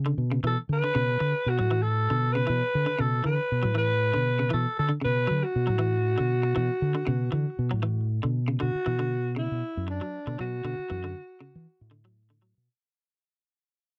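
A growling alto saxophone carries the melody with raspy, gritty tone, scooped notes and vibrato in this hypnotic, intense afrobeat excerpt at 118 BPM in B minor, with a lightly swung sixteenth-note feel. A round, punchy fingered electric bass sits up front, while a bright, clean electric guitar plays picked arpeggios over a Bm9 chord that shifts to Bm7 at 8.6 seconds. The dry, close 1970s-style studio sound has light reverb, and the track fades out from 8.6 seconds to its end at 12.7 seconds.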